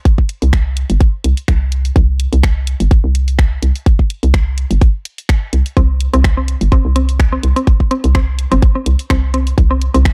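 A swung 4/4 pulse drives this cool, quirky minimal techno excerpt, where a tight, up-front layered electronic kick and a quieter garage kit of finger snaps and hi-hat sit under a hollow, bouncy FM bass with tube saturation and sidechain pumping, and a woody, round mallet-like synth pluck with chorus, cassette-tape colour and dub echo joins them at 5.8 seconds, all in a dark, dry production.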